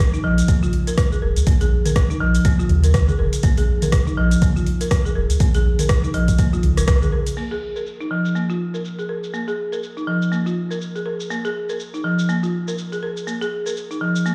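Swung sixteenths at 122 BPM in 4/4 carry this hypnotic afro house excerpt in Bb minor, where a round, dark, sidechain-pumped analog bass and an overdriven, deep electronic kick anchor the low end until a band accent at 6.9 seconds and their stop at 7.0, while woody, dry, up-front folk marimba arpeggios with dub echo and a filtered, overdriven afro-pop kit of metallic hats, rim clicks, shaker, toms and crash run on through a big sound system in a reverberant bare room.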